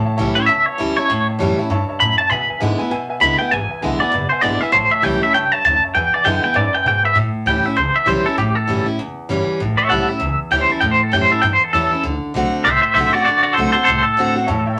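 A swung feel at 197 BPM drives this upbeat, rollicking rockabilly cut in A mixolydian, taken from a longer piece. A picked steel-string acoustic guitar with a full-bodied dreadnought ring plays the accompaniment up front, while an upright bass plays pizzicato on gut strings with a thumpy, woody low end. A twangy, clean electric guitar carries the melody with tremolo, sitting loudest in the mix, and its solo runs from 7.2 seconds to the close. A clear, slightly detuned upright piano with short sustain adds high accompaniment through the first half, dropping out at 7.1 seconds and returning briefly at 14.5 seconds. The harmony moves between A7 and E7 before reaching D7 at 12.0 seconds, all set in a moderate studio ambience.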